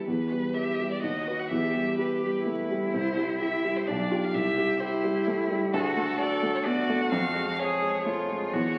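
A rich, focused violin carries the melody over a dark, mellow grand piano that sits up front, and a clear solo cello joins at 0.6 seconds with a bowed second line, both strings singing with vibrato. This stormy, urgent classical-period movement for piano trio moves quickly in triple time with a rubato feel, its minor-key harmony pressing forward through restless chord changes. The piece is cut from a longer work and heard through the crackle of a very old 78 rpm record, bathed in the wet reverb of a recital hall.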